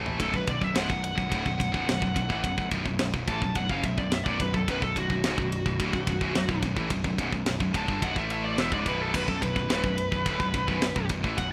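A warm, distorted high-gain lead guitar carries a solo from 0.2 seconds in this dark, epic heavy metal passage, cut from a longer piece and launched by a drum fill at 0.0 seconds. Beneath it, a bright, scooped high-gain guitar drives the riff over a Bm chord, joined by a very quiet heavy high-gain guitar, a double-tracked crunchy overdriven guitar and a growly fuzz bass sitting in the background. An up-front metal drum kit with a high-tuned snare, tight kick, toms, crash and ride sounds saturated and gritty with a rolled-off top, all within a rough home demo mix touched by light reverb.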